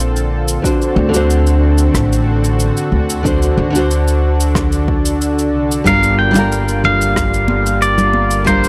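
Smooth and relaxed, this short sunset chillout excerpt moves at an easy 92 BPM in a straight 4/4, tuned slightly low to A4 = 438 Hz, and drifts from Bbmaj7 to D7 before settling on Gm7 at 5.9 seconds. A bright, fingerpicked nylon-string guitar carries the accompaniment through a low-pass filter and analog delay, while a thick, warbling sawtooth pad with chorus holds sustained chords underneath with a slow attack and long release. Up front, a woody, thumpy pizzicato upright bass with tube saturation anchors the low end, joined by dark, smooth brushes on cabasa, rim click and toms and a punchy, layered electronic kick. At 5.9 seconds a clean, compressed pedal steel guitar enters with the melody, played with fingerpicks, slide and volume swells, and bongos and congas struck with hard hands sit close and dry in the background from 6.3 seconds. The whole piece has a dry, gritty hardware character with transformer saturation.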